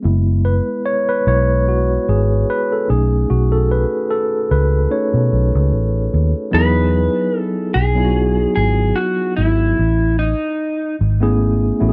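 A mellow, clean tine electric piano takes the spotlight in the opening, carrying a solo through the first 6.5 seconds of this soulful neo-soul and R&B fragment cut from a longer piece. Underneath, a dark, round, foam-muted fingered electric bass with a vintage character sits up front at a relaxed 74 BPM in 4/4, with a gentle swing on the sixteenths. At 6.5 seconds an electric guitar through a small old amp brings in the melody, its tone slightly broken-up, picked, compressed and lo-fi, before it drops out at 11.0 seconds. The harmony in E major moves through F#9sus4 and B9, then settles onto Emaj9 and Amaj9 as the guitar enters. The dry, close sound of a 1970s-style studio keeps every part intimate and warm.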